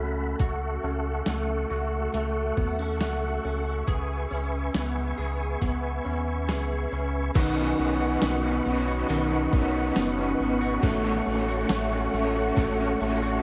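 A reverb-drenched, dreamy mix opens this haunting, melancholic dream pop excerpt, where a gritty, pitched-down trip hop sampler-style kit with a thumpy kick, a deep sine sub bass with octave and a bright, twangy guitar at the edge of break-up picking arpeggios through chorus and tape echo sit up front over soft, flute-like tonewheel organ chords with fast rotary, before a lo-fi overdriven garage guitar with tremolo enters in the background at 7.3 seconds and a very quiet, bell-like celesta adds delicate texture from 7.7 seconds.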